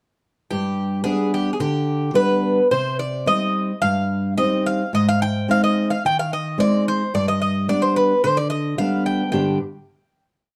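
Moody and bittersweet, this short Greek folk piece for a bouzouki band moves at 109 BPM in a straight 4/4, set in G phrygian dominant. The Greek bouzouki carries a modal melody full of ornaments, its bright, metallic double strings picked up front, with some courses doubled at the octave. Beside it, a fingerpicked steel-string acoustic guitar supplies bass notes and chord figures in an oompah accompaniment, its warm tone marked by audible finger squeak. Both parts play from 0.5 to 9.6 seconds, running through a G, Cm, Ab and back to G progression before a final chord at 9.3 seconds. The dark, warm production sits in a wet small room reverb.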